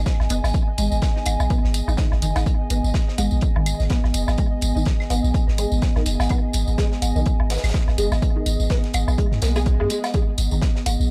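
A punchy sub bass with a pitch-drop attack opens this hypnotic, cool minimal techno excerpt, sounding together with a faint pulsing gated texture and a warbling, nostalgic tape-like pad that sits dark and lo-fi behind a chorus and built-in reverb, all three breathing with sidechain pumping. An analog electronic kick drum arrives up front almost at once, joined by the dry acoustic hi-hat and medium-tuned snare of a deep reggae drum kit, a jingly tambourine in a small room, and overdriven woodblock, cowbell and claves trailing analog delay. A squelchy, resonant blip pluck carries the riff, its detuned sawtooth tone shaped by a moving notch, phaser, ensemble chorus and tape echo. A layered, overdriven electronic hi-hat adds bite over a lightly swung groove that holds on a single minor chord throughout. A very quiet electronic swell passes between 9.4 and 10.1 seconds, and the whole has a dry, gritty hardware character.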